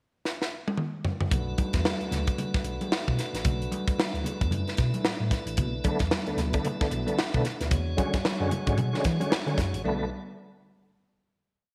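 Hypnotic and sly, this short funk piece at 113 BPM in B dorian swings its sixteenths as a crisp, high-tuned fusion drum kit opens with a fill before a breakdown on Bm7 and E13, where a mellow tine electric piano carries a syncopated bass riff with muted ghost notes, ringing vintage congas add a syncopated groove, a piping tonewheel organ holds sustained chords through a slow rotary speaker, and from 5.6 s a gritty, overdriven second organ punches up-front two-handed stabs through chorus vibrato and a fast rotary speaker, all settling onto a final Bm7 chord at 9.8 s in a small, echoing room.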